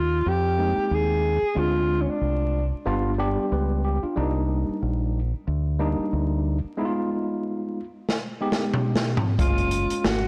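A relaxed, swung 4/4 groove at 92 BPM sets up this cool jazz-hop excerpt, its sixteenths leaning into a lazy shuffle from a longer hip hop piece. A deep, round fingered electric bass anchors it from the start, dark and punchy up front, while a breathy alto saxophone with mellow vibrato and a roomy, distant tone sings a brief solo phrase over the opening seconds and returns at 9.4 seconds. From 0.6 seconds a worn, slightly out-of-tune tine electric piano, lightly overdriven through its built-in speakers, comps through the chords from Abmaj9 and Dm7b5 to G7, Cm9, Abm6 and finally Gbmaj7. An open acoustic jazz kit arrives late at 8.1 seconds with a fill across hi-hat, snare, toms and a boomy kick, its medium-tuned snare softly clipped in a small, dark room. The whole recording sits blown-out and overdriven under vinyl crackle, with light reverb and studio ambience giving it a dusty, lo-fi haze.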